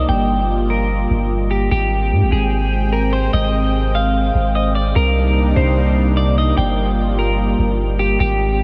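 A dreamy, reverb-soaked mix opens this short hip hop excerpt, with a huge ambient reverb tail lingering around every sound and lending it a blissful, floating mood. The groove sits in a relaxed half-time feel, anchored by a long, sustained 808-style bass that is deep, sine-like and mellow, with a fast attack that decays while sitting up front. A dark analog pad holds sustained chords throughout, its detuned sawtooth and triangle tones, sub octave and slow attack giving a moody, shadowy bed, thickened further by chorus. Over this, a clean, picked electric guitar carries the melody up front, its tone softened by a low-pass filter and spread out by lush chorus and diffuse ambient delay. The harmony moves from Gm7 into Abmaj7 at 1.7 seconds, then through Cm7 at 5.0 seconds before returning to Gm7, keeping the dreamy, blissful atmosphere until the clip cuts off.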